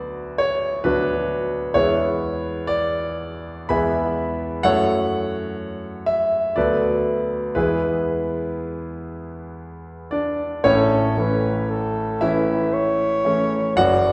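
A spacious, reverberant hall sound frames this tender, serene romantic classical excerpt in 3/4 and A major, where a clear, up-front grand piano with deep bass carries the rubato accompaniment alone at 56-67 BPM through chords like Bm/D, E and F#m7 until a mellow alto saxophone with light vibrato and a soft attack enters at 10.7 seconds to sing the melody as the harmony settles on A.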